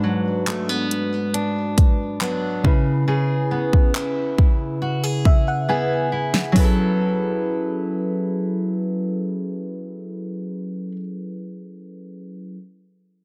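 Late-night and longing, this fragment of contemporary R&B pairs a mellow, round, warbling FM electric piano with chorus and a dark, fingerpicked steel-string acoustic guitar arpeggiating through digital delay, while a layered pop drum kit of punchy kick, fat snare, hi-hat and handclaps sits up front from 0.5 to 6.8 s, its fill joining a piano fill just before the harmony settles onto F#m11 at 6.6 s, all under light reverb and a dense, heavily limited modern master.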